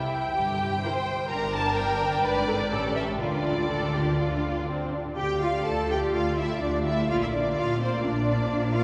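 Drenched in a wet cathedral reverb from a church or concert hall, this stormy, restless fragment of a quick classical-period movement for string orchestra moves with a rubato feel. Bowed violins carry a lush melody with vibrato over a second violin line of soft attacks and expressive portamento. Dark cellos and woody double basses take the bass from 0.4 s, and the violas add an even, smooth-topped accompaniment from 0.8 s, as the harmony passes through C, Gm, G#dim and A7 to Dm before turning to Bb.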